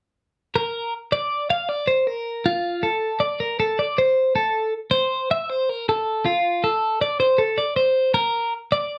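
A dark, warm studio sound with moderate reverb frames this playful, intricate rock excerpt in 5/4 at 158 BPM in Bb lydian, where a bright, clean, twangy twelve-string electric guitar plays solo and up front from 0.6 seconds, its picked, compressed lines ranging from F4 to F5.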